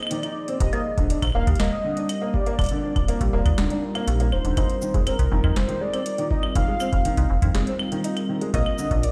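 From the start, a velvety synth lead with chorus and delay carries the melody over a glassy, ethereal FM pad and a booming, overdriven analog drum machine of crisp snare, hi-hat, claves and shaker, with a felt-muted upright piano adding soft, boxy arpeggios with audible action noise in this glitchy, cerebral IDM fragment. At 0.6 seconds a metallic FM bass arrives up front alongside a deep, overdriven electronic kick, as the harmony moves from Fm7 to Ebmaj7, then to F7(no3) at 4.6 seconds and Bb at 8.5. The mix sounds as if played on a big sound system in a bare stone room.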